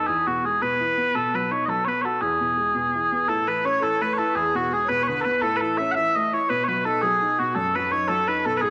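Mellow, sweet small bagpipes carry the vibrato-tinged melody up front in this rollicking, cheerful Celtic folk fragment in E major, moving at 112 BPM in a straight 6/8. A clear, woody upright piano with a boxy, short-sustained tone supports the tune throughout, and at 3.3 s a reedy, dark accordion with a slow beating shimmer joins as a smooth second line. A wet echo-chamber reverb gives the recording a roomy, ringing glow.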